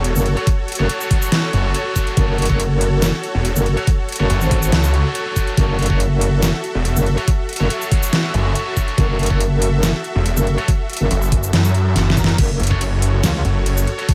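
Menacing and heavy, this half-time wobble dubstep drop at 141 BPM in F# minor sits on a single F# minor chord, driven by an up-front, growling saw bass with distortion and overdrive and a metallic FM wobble bass thickened with chorus, the louder of the two. Overdriven electronic drums with a knocking kick, deep snare, metallic hats, shaker and crash punch hard in a dry mix, while a lush supersaw pad breathes under sidechain pumping and a bright, double-tracked distorted guitar adds tight stabs through digital delay. A drum fill at 12.0 seconds resets the drop at 12.4 seconds in this cut from a longer piece.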